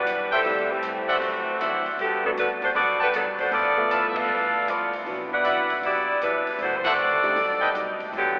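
Dramatic and brassy, this big band swing excerpt is cut from a longer piece and moves with a swing feel in 4/4. A clear, tight saxophone section carries the melody up front, its light vibrato and soft attack giving it a vintage jazz character. Behind it, a bright trumpet section adds stabs from 0.3 seconds. A woody pizzicato upright bass, a picked steel-string acoustic guitar and a concert grand piano with deep bass and long sustain fill out the accompaniment, while a natural drum kit with a punchy kick, medium-tuned snare, hi-hat and ride sits in the background. The band hits accents at 4.1 and 6.8 seconds as the harmony moves from Am7 and D9 through Gmaj9 and Cmaj9#11 to a closing B7alt. The sound is drenched in a long church reverb yet narrowed to a thin telephone tone.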